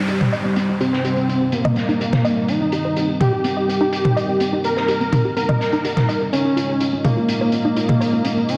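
Melodic techno at 125 BPM in C phrygian, cinematic and driving: a thick, detuned sawtooth unison lead carries the melody up front with vibrato and dub echo over a moody, chorused analog pad and a round, bright analog pluck arpeggiating in the background, while a downlifter sweeps through the opening 2.5 seconds, electronic toms re-recorded in a large room sit prominently alongside a gritty, saturated garage kit of filtered hi-hat and medium-tuned snare in a pumping stone room, and the harmony moves from Cm to Dbadd9 at 6.3 seconds, all bathed in lush hall reverb under a dense, heavily limited master.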